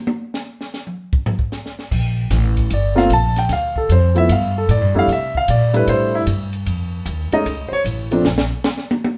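A swung 4/4 groove opens this late-night jazz piano trio piece, cut from a longer performance, with a compact cocktail drum kit playing alone for the first 1.9 seconds, its dry, high-tuned snare and punchy kick framed by hi-hat, ride, crash and toms. At 1.9 seconds the pizzicato upright bass joins up front, its woody, thumpy steel-string tone anchoring a minor-key progression that begins on Gmadd9 and passes through Dm, Gsus2 and C69 to F7b13. The concert grand piano enters at 2.7 seconds and takes the solo spotlight, its warm sound with deep bass sitting forward alongside the bass, while the drums stay further back. The trio plays live in one room with moderate studio reverb, giving the swinging, after-hours mood an intimate, close feel.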